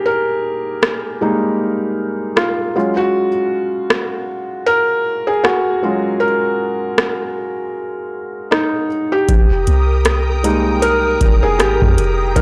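Moody and late-night, this brief cut from a longer contemporary R&B piece moves at 78 BPM in 4/4 with a swung sixteenth-note feel. A felt-muted upright piano carries the accompaniment and its featured solo throughout, soft and intimate with audible action noise and a vintage, mellow character, sitting up front. From 0.8 seconds a booming analog drum machine adds hi-hat, deep kick and rim click, its metallic hats and overdriven grit sounding as if re-recorded in a large room. The harmony drifts from Fm11/G to Gbmaj9 before settling on Fm11, where a round, sine-like 808-style bass enters at 9.3 seconds, joined at 9.4 seconds by an ethereal FM pad with ensemble chorus and its own reverb. The overall sound is a dry, gritty hardware recording wrapped in digital ambience.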